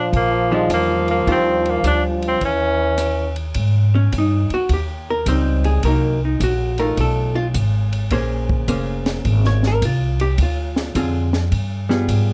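Small-group swing and bop jazz with a sophisticated, playful air and a swung 4/4 feel, heard as an excerpt from a longer piece. A bright, forceful tenor saxophone carries the melody up front, with a vintage edge, while a trombone adds a second line with scooped notes; both horns play with vibrato and stop at 3.3 s. Pizzicato upright bass, woody and thumpy with steel strings, sits prominently under the whole passage. A compact cocktail kit gives a dry backing of hi-hat, ride, rim click, punchy kick and a high-tuned snare under dark cymbals. From 0.5 s, a clean, compressed hollow-body archtop guitar, electric and picked, comps through rich extended chords that shift at 3.6 s into a new section, all set in light reverb.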